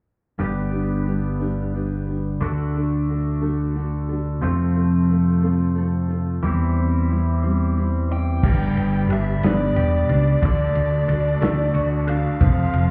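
Heard muffled through a wall with a light club reverb, this jangly folk rock and heartland rock passage in 6/8 opens at 0.4 seconds with a bright, twangy twelve-string electric guitar riff over a picked steel-string acoustic guitar with audible finger squeak and a punchy, up-front fingered electric bass, moving through G, D, F and C/E. At 8.1 seconds a nasal, overdriven lead guitar with a parked wah takes up the melody high in its range. From 8.4 seconds a lo-fi vintage drum kit with a rolled-off top arrives with kick, snare, ride and crash, joined by a barely audible grainy tube shaker and a clear, bowed studio string section holding vibrato chords in the background.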